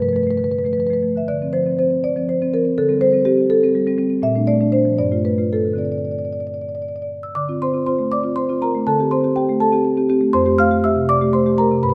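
A round, woody marimba played with soft mallets sits up front in a moderate scoring-stage reverb for this hypnotic, reflective contemporary classical excerpt in D minor, drifting in rubato 6/8 at around 73-83 BPM as mellow chords such as Dm7, Am7/D and Bbmaj7 pass over a span from F2 to F6 before settling on Fmaj9 at 10.3 seconds.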